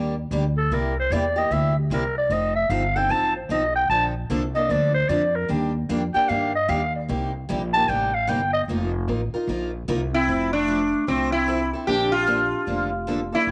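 Swinging at 150 BPM in 4/4, this playful acoustic string swing excerpt in jazz manouche style sets a bright, boxy picked steel-string guitar and a woody, thumpy pizzicato upright bass under a raspy, growling clarinet solo that enters at 0.6 seconds, before a buzzing, shimmering sitar takes the melody from 10.1 seconds as the music settles into F major, all heard through light small-room reverb with a homely cassette character.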